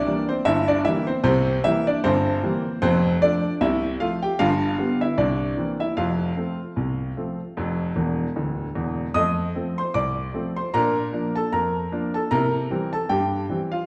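A clear, up-front grand piano carries this cheerful, jaunty ragtime excerpt alone, moving at 76 BPM in 2/4 with a light swing on the sixteenths in F major, its smooth, vintage tone and short sustain spanning from deep bass to bright treble. A piano fill at 8.0 seconds leads into a new section at 9.1 seconds, where the harmony moves through F7, Bb and C7. The playing sits in a wet recital-hall reverb with a church or concert-hall air, and the passage is cut from a longer piece.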